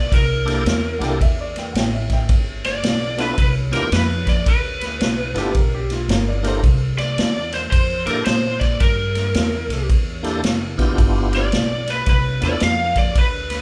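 Rollicking and soulful, this electric blues shuffle rolls along at 110 BPM in 4/4 with a swung eighth-note feel, a short cut from a longer piece in G mixolydian. Up front, a lead guitar through a small cranked amp carries the melody with a picked, overdriven bite, while a pizzicato upright bass with steel strings gives a woody bottom throughout. A vintage drum kit with a punchy kick, medium-tuned snare and dark ride cymbal sounds roomy and rolled-off on top, sitting a little distant yet still prominent. A lightly overdriven tonewheel organ fills in the harmony from 0.5 seconds through a slow rotary speaker and chorus vibrato, and a warm, woody upright piano adds a second line between 1.0 and 6.8 seconds. The harmony moves between C13 and G13, and the band plays live in one room, bathed in a moderate large studio reverb.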